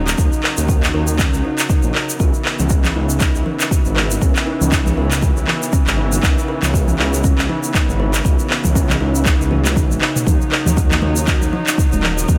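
A dark chamber string section and a deep, rumbling detuned saw bass open this short excerpt of afro house, both pumping under sidechain as they sustain an Ebm7 chord that shifts to Dbm7 at 2.2 seconds. Almost at once a tape-warm electronic kick, an afro-pop kit with handclaps and toms, and a grainy, bright egg shaker set a driving 119 BPM groove in 4/4 with a 16th-note swing. A woody kalimba plays arpeggios in the background, its plucked, ringing tone carried by dub echo and the same sidechain pumping. The strings stay intimate and close, bowed sul tasto with light vibrato, while the bass beats and rumbles beneath them. After a drum fill from 9.5 to 10.3 seconds, the harmony returns to Ebm7 and damped, high-tuned congas enter softly at 10.3 seconds, all within a studio reverb that keeps the mood warm and driving.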